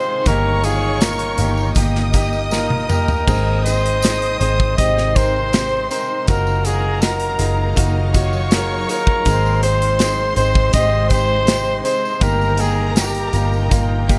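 A steady, straight 4/4 pulse at 80 BPM sets the pace for this tender, heartfelt pop ballad in Ab major, cut from a longer piece. A clear, up-front flugelhorn carries the melody with jazz-style vibrato and a vintage character, while a lush, bowed violin section adds an expressive second line. A clear, natural grand piano supplies the accompaniment, and a shimmering, ethereal pad with chorus and built-in reverb holds sustained chords in the background. From 0.3 seconds, a dark, round, foam-muted fingered electric bass and an airy, polished acoustic drum kit with a tight kick and medium-tuned snare join up front, along with a jingly tambourine further back. The chords move between Eb/G, Ab and Ebmadd9/Gb, and a drum fill at 2.5 seconds leads into the shift to Ab, all set in a small room ambience.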